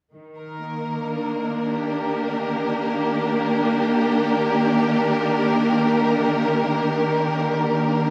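A lush, bowed string section holds sustained chords with vibrato and portamento between Eb3 and Bb4, resting on an Ebmaj7 from 0.1 to 8.1 seconds in this peaceful, luminous ambient fragment in free time and Eb major, tuned to A4 = 441 Hz and set in a vast cathedral reverb with a 4.8-second decay that makes the brief passage, cut from a longer piece, feel like it floats in an echoing space.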